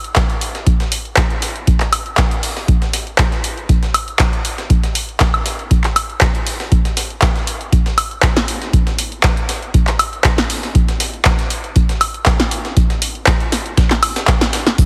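This hypnotic, raw house excerpt opens at 0.0 s on a punchy analog drum machine playing cabasa, handclaps, hi-hat, woodblock and a snappy snare, set up front with a short room on the snare, clap and hats. At 0.2 s a deep electronic kick arrives alongside it, carrying a tape-saturated analog weight and sitting prominently at the front of the mix. At the same moment a sampler-style breakbeat kit of hi-hat and medium-tuned snare settles into the background, gritty and overdriven, re-recorded in a small room, with high-pass filtering on its snare, hats and room sound and sidechain pumping on the hats. The groove runs at 119 BPM in 4/4 with a slight 53% swing on the sixteenths, staying in a single section through to the end. Light reverb and digital ambience surround the kit, and the whole mix is squeezed into a heavily compressed, radio-like sound.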